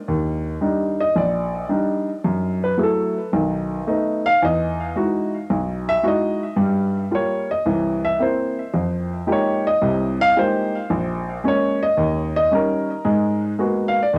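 A warm, up-front baby grand piano plays solo jazz in a relaxed, swinging 4/4 at 111 BPM, its natural, short-sustained tone carried through cassette tape and analog delay. It moves from Ebmaj7 through chords such as Emaj9 and Fm11 to a closing Abm9 at 13.1 seconds, all set in a wet studio reverb on this home cassette recording, a brief excerpt cut from a longer piece.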